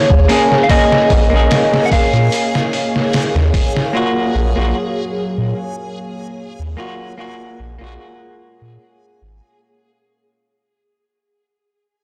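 A dark, melancholic trip hop fragment opens with a slightly broken-up slide guitar melody under tape echo, set over a detuned analog pad with chorus and a reversed, granular texture, all fading out from the start. A muffled, pitched-down sampler kit with a thumpy kick and overdrive plays until 3.9 seconds. Beneath it, a round dub sub bass moves through a filter sweep, and a clean hollow-body guitar with harmonic tremolo and tape echo carries the accompaniment to the end, all within a blown-out, overdriven mix with light digital ambience and a gentle sixteenth-note swing.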